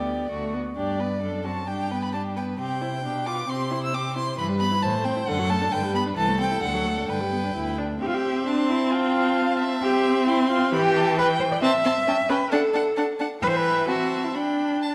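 Lively and cheerful, this passage cut from a longer classical-period string quartet movement sets a rich, smooth first violin singing the melody up close with vibrato, a more distant second violin shaping an expressive second line with portamento, an even viola filling in the accompaniment up front, and a clear cello carrying the bass with light vibrato, each part bowed by a single player in a moderate scoring-stage reverb.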